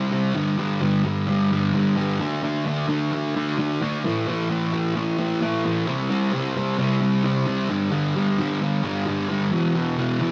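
A double-tracked, picked electric fuzz guitar sits up front and plays alone through this brooding yet cathartic rock excerpt at 131 BPM in straight 4/4, tuned to A4 = 445 Hz, grinding through G5, D5, A5, C5, G5 and E5 power chords with warm distortion, ringing in a moderate stone-room reverb that gives it the feel of a band playing live together.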